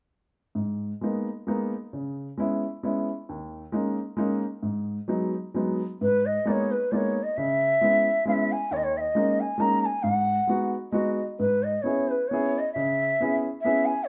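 Moderate studio reverb frames this live, one-room recording of a nostalgic, bittersweet musette in a swung, rubato waltz time, where a woody, polished upright piano accompanies alone from 0.6 seconds until a pure, hollow bamboo bansuri with tongued notes and vibrato takes up the melody at 6.0 seconds, both instruments sitting up front.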